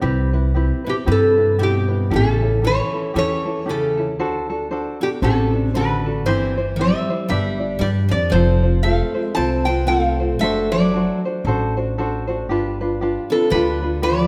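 A lightly swung 4/4 lilt carries this dreamy, relaxed Hawaiian excerpt, where a light, thumb-plucked tenor ukulele and a woody, steel-strung pizzicato upright bass sit up front from the start, joined at 0.9 s by a mellow, nasal metal-body resonator slide guitar played with fingerpicks that carries the melody up front, and a bright, fresh-stringed picked dreadnought acoustic guitar tracing a second line with audible finger squeak, inside a wet recital hall reverb.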